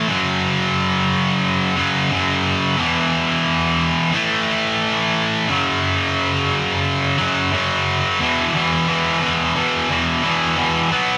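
This short rock excerpt opens on a bright, up-front sound with a moderate studio reverb that places a band playing live in one room. A single scooped, high-gain electric guitar takes the solo from 0.0 to 11.2 seconds, picked and double-tracked, its distortion giving the tone a hard, aggressive edge. At a straight 89 BPM in 4/4, the part moves through power chords on F#5, E5, A5 and back to F#5, ranging from E2 to B3. A new section arrives at 8.2 seconds on E5, keeping the driving feel until the clip breaks off as part of a longer piece.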